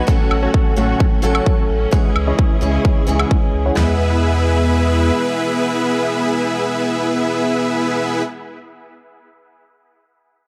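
A dark, warm production with light reverb and digital ambience frames this triumphant, euphoric slice of festival progressive house in E major at 130 BPM, led by a huge, thick, detuned supersaw riff that pumps against the sidechain, carries dub echo and runs through a low-pass filter sweep until 3.8 seconds. Up front, a big-room drum kit with a punchy kick, huge snare and toms hits with overdrive alongside an overdriven woodblock, while a deep, saturated sub bass pumps beneath them until 5.1 seconds. A boxy, picked steel-string acoustic guitar with dub echo and a bright, biting, distant string section of lush bowed chords carry on behind them over F#m/A, C#m and then E.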